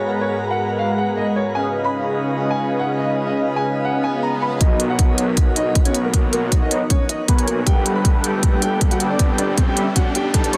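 In a half-time pulse, this lush, playful future bass piece opens with a dark, boxy grand piano melody trailing tape echo, an airy, breathy pad and a smooth supersaw riff, all three pumping with sidechain, before a very quiet swell and riser at 4.0 seconds leads into a build-up at 4.6 seconds where an up-front, hard-clipped kick, crisp hi-hats and a thick, detuned saw bass sitting in the background join as a filter sweep runs over the supersaw.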